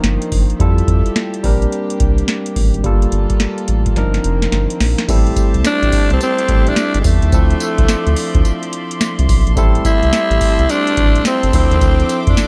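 Flirty and bouncy, this new jack swing R&B excerpt moves at 107 BPM in 4/4 with a 16th-note swing feel. A booming analog drum machine sits up front with a deep kick, tonal snare, metallic hi-hats, crash cymbal and tambourine, matched in level by a round, dark analog bass with a fast attack and sustained tone. Above them, a barky tine electric piano sounds bright and clean through a combo amp, while a soft-attack studio string section floats in pure, bowed sustained chords further back. After a drum fill from 4.0 to 5.1 seconds, the harmony shifts from a Cm11, Fmaj9, Bb69 and Gm9 progression to alternating Am7 and Dm9 chords. At 5.7 seconds a raspy, gritty alto saxophone enters up front with a bright, pop-style solo melody colored by vibrato, all in a dry sound with little reverb.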